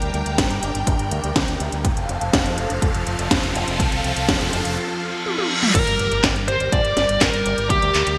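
Drenched in a lush hall reverb with a bright 1980s-style digital sheen, this italo disco excerpt feels melodramatic and bittersweet. A swirling, vintage string machine with ensemble chorus and phaser holds sustained sawtooth chords over a fingered electric bass with an envelope filter and tube saturation, while a punchy electronic kick and an up-front house kit with a cracking snare, metallic hi-hats, handclaps, toms and crash cymbal give a tape-tinged, layered pulse. Electronic effects build from 1.3 s, with a riser giving way to a reverse cymbal, joined by a drum fill at 5.3 s, and at 5.7 s an impact lands as a dark, smooth, overdriven lead guitar takes the melody.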